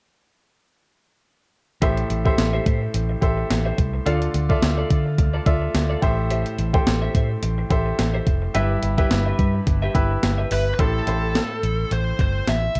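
At 1.8 seconds a thumpy, overdriven 12-bit drum machine, a round, foam-muted fingered bass and a clear grand piano enter up front with a bright, twangy twelve-string electric guitar riff glinting in the background through lush chorus and slapback echo, setting a moody, urgent 1980s-style pop groove in A minor at 107 BPM over Am7, Dm and Em/G, before a bluesy, distorted lead guitar takes the melody from 10.5 seconds and the riff drops out at 10.7 seconds in this dark, lightly reverberant cut from a longer piece.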